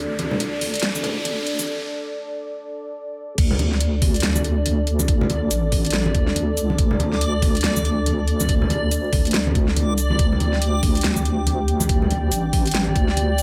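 A dark, moody analog pad with a sub octave and a deep, saturated wobble bass open this cavernous, brooding deep dubstep excerpt at 141 BPM in swung half-time, joined by an electronic riser that ends at 1.7 seconds, a layered dubstep kit with a huge snare, metallic hats, crash and shaker, and ringing, distant congas carrying dub echo, before a knocking electronic kick lands the drop at 3.4 seconds and a reversed, dreamy granular texture swells in at 4.1 seconds.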